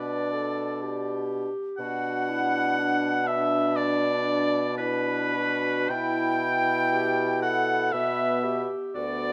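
In a rubato 4/4 at 60 BPM, this solemn, melancholic slow romantic movement for wind quintet unfolds over a 9.3-second passage cut from a longer piece. A warm oboe with light vibrato sits up front on the second line, ahead of the pure, crisp-attacked concert flute melody set in the background, while a dark clarinet and a distant, roomy French horn fill the accompaniment and a mellow bassoon anchors the bass, the harmony moving from G/B through Em/B to Bm in a moderate recital hall reverb captured by close, detailed microphones.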